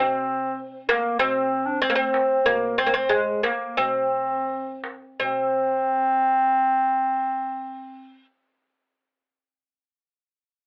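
Heard through a telephone-like sound with a moderate studio reverb, this short cut from a longer hypnotic, soulful Turkish makam ensemble piece moves at 80-100 BPM in a straight 4/4 tuned to A4 = 444 Hz, slowing over its first 5.2 seconds, as a woody, fretless, plectrum-plucked oud with double strings carries the melody up front beside a mellow, roomy classical-style clarinet second line, while a soft-handed clay-shell darbuka with a compressed, saturated tone plays from 0.6 to 5.6 seconds.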